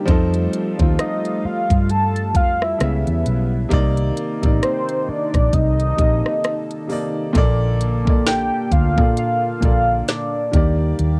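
Contemporary R&B with a romantic, tender mood and a gently swung feel, built on an up-front trap kit with a knocking kick, woody snare and crisp hats, a dark, round, foam-muted electric bass, a clear, intimate grand piano with audible action noise, and a lush, warbling, detuned pad with chorus in the background, while a velvety synth lead with chorus, tremolo and tape echo enters at 1.0 s, the piano, pad, drums and lead carrying a cassette tape color in a lightly reverberant home recording.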